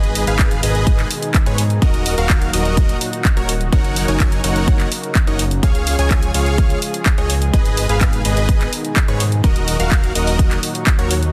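Uplifting and triumphant, this short cut from a longer festival progressive house track drives along at 126 BPM in a straight 4/4. A dense, compressed supersaw carries the riff, huge and airy with detuned unison sawtooth layers, a sub octave, a noise layer and vibrato, its notes trailing into dub echo as it pumps against the sidechain. Beneath it a fat analog bass, built from detuned sawtooth, square and triangle waves with ring modulation and a filter sweep, holds the low end with a mellow, sustained tone. Far back in the mix, a lush, warbling vintage pad sustains chords through chorus and sidechain pumping, cycling through G#m, D#m, F#6 and C# before returning to G#m and D#m. A house drum kit supplies handclaps and warm hats, and a punchy, up-front electronic kick enters at 0.4 seconds. The whole piece sits in a digital ambience under a dense, heavily limited modern master.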